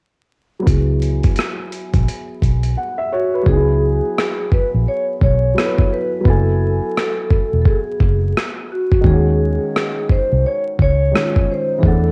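A swung, unhurried 86 BPM boom bap groove drives this melancholic, hazy lo-fi hip hop cut in C# minor, where a gritty, pitched-down sampler kit with a thumpy kick and rim clicks drops out from 2.8 to 3.5 seconds before returning with its hi-hats muted, as a round, foam-muted electric bass sits up front beneath a woody upright piano carrying a filter sweep through the opening and a ringing vibraphone with fast motor vibrato entering at 3.1 seconds, all over C#m7, F#m11 and D#m11 chords wrapped in cassette tape grain and vinyl crackle.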